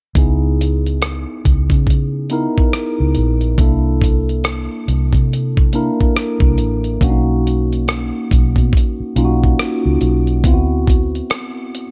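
Late-night and introspective, this swung neo-soul R&B cut at 70 BPM in C# dorian pairs a mellow tine electric piano with a phaser, a round, foam-muted fingered electric bass that stops at 11.2 s, and a gritty, compressed sampler-style kit of hi-hat, thumpy kick and rim click, all up front in a digital ambience as the chords drift from C#m7 through C13 and Bmaj7 to D13.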